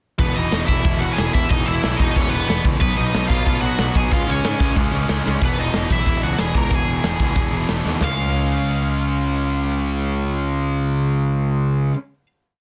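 Dry, dense and heavily limited, this short, complete punk rock piece charges ahead at 184 BPM in a straight 4/4 with a rowdy, upbeat mood. A sludgy, warm-toned overdriven guitar and a tighter, more brilliant distorted guitar both drive eighth-note power chords, while a growly fuzz picked bass pushes matching eighth notes beneath them. Up front, a big acoustic rock kit plays a fast punk groove with a punchy kick, medium-tuned snare, hi-hat, toms and crash cymbals, firing fills at 5.3 and 7.9 seconds. Over the top, a cranked stack guitar with overdrive and tape echo plays hook phrases built on short motifs, partly doubled in octaves. The riff moves from E through Cb and Db before the outro returns to E at 5.4 seconds. The drums stop at 8.1 seconds, leaving the guitars and bass to hold a final Db chord.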